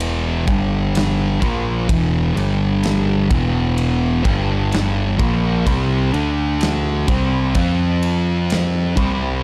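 A slow, straight 4/4 pulse at 64 BPM anchors this brooding, hypnotic stoner and doom metal fragment, played on a big rock drum kit with a punchy kick, a medium-tuned snare and ride cymbal, all smooth and set in a big room. Up front, a thick, double-tracked fuzz guitar grinds through a riff on power chords moving from G5 and E5 toward A#5, C5, D5 and F5, while a bright, overdriven picked electric bass growls beneath it. Light studio reverb and a dark production frame the whole passage.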